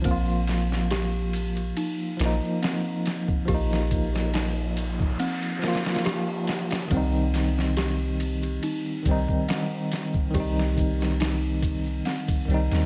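The rhythm moves in a slow 4/4 with a slight swing on the sixteenths, carried by a boom bap sampler-style drum kit whose thumpy kick, medium-tuned snare and ride cymbal sound pitched down, gritty and compressed, placed up front with a tape-tinged character. Maracas and triangle join at 0.1 s, saturated and tucked into the background, while a soft 808-style bass holds the low end with a deep, round, sine-like tone that decays after each fast attack. Above this, a bell-like tine electric piano plays bright, clean accompaniment through tremolo and tape echo, and a small celesta adds delicate, sweet arpeggios roughened by vintage 12-bit sampler grit, a low-pass filter and its own tape echo. An electronic noise sweep drifts in the background from 4.1 to 6.9 s, as the harmony moves from Bb5 to C minor. This cinematic, hypnotic trip hop passage, cut from a longer piece, sits in light reverb and digital ambience.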